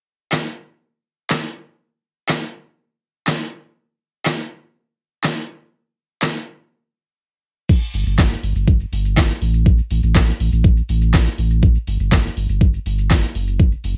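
An up-front, overdriven electronic drum kit opens this upbeat, summery dance-pop excerpt at 0.3 seconds, its layered, produced sound built from a knocking kick, deep snare, handclaps, hi-hat, shaker and crash cymbal, re-recorded in a small room. After a short break at 6.7 seconds, the drop arrives and a round, sine-like sub bass enters at 7.9 seconds, its deep, sustained notes carrying a fast attack and sidechain pumping. The dry sound has the feel of a home recording on cassette.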